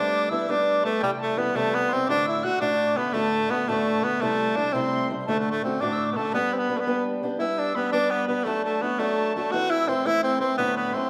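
A wet recital hall reverb surrounds this cheerful, rollicking Celtic jig in 6/8, heard as a short cut from a longer piece. Up front, a bright tenor saxophone carries the melody in a classical style, its vibrato singing as the lead voice. A distant tin whistle plays a second line high above, its metal tone pure and soft in attack, with a vibrato of its own. The fingerpicked acoustic archtop guitar, also up front, supplies warm accompaniment, and finger squeak can be heard on the strings. The chords move from Gadd9 through C, D and Am7/C, and a new passage at 7.4 seconds turns through D/F# and Am/E before landing on Dadd9.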